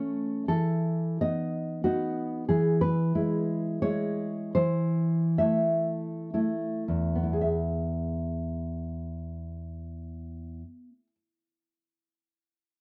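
A dry, close studio sound with light reverb and a 1970s character frames this tender, nostalgic fragment of a romantic piece for solo classical guitar in E major, moving in a rubato 3/4 between 52 and 97 BPM. The nylon-string guitar sits up front, dark and full-bodied with a deep, thumb-plucked tone spanning E2 to E5, and plays from the start until 11.2 seconds. The harmony moves from B7 over E through E and A minor over E, slowing between 1.5 and 7.4 seconds before a new section returns to E.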